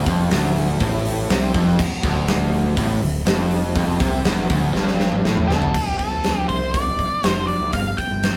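A huge arena drum kit sits up front with a fat snare and punchy kick in this brooding, swaggering classic rock fragment, playing a fill from 4.8 to 5.7 s. Beneath it, a bright cranked stack guitar, a hollow-body semi-hollow guitar and a very quiet, double-tracked fuzz guitar play a low riff over D minor in the background until 5.7 s, while a growling, round electric bass with overdrive holds the bottom. At 5.5 s a dark octave-fuzz lead guitar steps forward with a distorted melody, all captured in a rough rehearsal-room recording with a small room's reverb.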